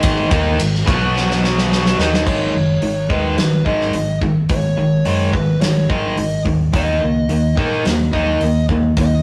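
A straight 4/4 pulse at 107 BPM drives this aggressive, menacing hard rock fragment, where a big-room acoustic drum kit with a punchy kick and medium-tuned snare sits up front beside a bright, picked overdriven guitar riff, a compressed distorted guitar plays its riff further back, a dark, round fingered bass holds the low end, and after a drum fill from 1.1 to 2.3 seconds a smooth overdriven lead guitar carries a melody from 2.3 seconds, the whole captured as a rough rehearsal-room recording with light reverb and saturation.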